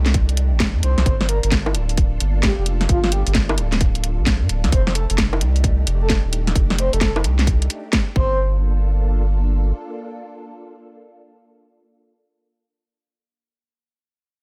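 An up-front, deep and round dub sub bass anchors this moody, soulful two-step garage excerpt, where a tight layered kick and a garage kit of cracking snare, hi-hat and bongos swing beneath a breathy, flute-like synth lead with vibrato and tape echo, all over silky string-machine chords pumping through phaser and ensemble chorus that play on alone from 9.7 seconds until the cut at 12.0 seconds.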